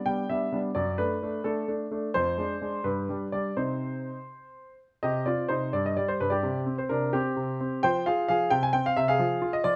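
Elegant and graceful, this short passage from a classical-period piano sonatina unfolds in C minor at 86 BPM, counted in dotted quarters in 6/8 with a flexible, rubato feel. A clear grand piano plays alone throughout, ranging from F2 up to Ab5, its tone present and up front. The opening phrase leans on G and D harmonies before settling onto C minor at 3.6 seconds. At 5.0 seconds a second section begins, moving through a brief unharmonized moment into bare fifths on C and then alternating between F minor and C colors. Light reverb gives the instrument a touch of space, and the fragment stops at 9.8 seconds, clearly cut from a longer piece.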